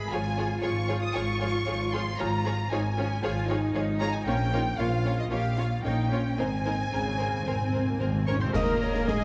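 A lush, soaring string section opens this heroic film-score fragment, rich violins carrying the melody over intense cellos and focused, up-front double basses, with a smooth second violin line and distant violas beneath, before a round, soft-mallet timpani fill enters at 6.4 s. Roomy oboe and very quiet clarinet slip in on second lines at 8.3 s, and at 8.5 s a brief orchestral accent arrives: dark horns and mellow trombones holding chords, a trumpet stab in the background, and clash cymbals with concert bass drum, joined at 8.6 s by an airy flute second line and snare drum with more cymbals and bass drum, all set in a moderate scoring-stage reverb.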